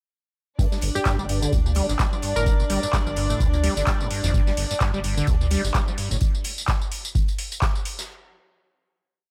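A trippy, hypnotic acid house piece opens at 0.6 s with a deep, up-front four-on-the-floor kick, a drum machine's metallic hats, tambourine and claps, a background arena kit looping a big-room breakbeat with a fat snare, and a squelchy, resonant sawtooth acid line whose accented, sliding 32-step riff carries a filter sweep, overdrive, chorus and tape echo. A round sine sub bass with tube saturation joins at 0.8 s in a dotted rhythm, while period-style bowed strings with a reedy gut-string tone hold sustained chords and a high note, and both bass parts, the strings and the kit's hats pump against the kick. A glassy, crystalline wavetable pluck drifts through short chorused, echoing phrases in the background, and once the strings and both basses stop at 6.2 s, the drums carry the swung groove on in a small-room ambience.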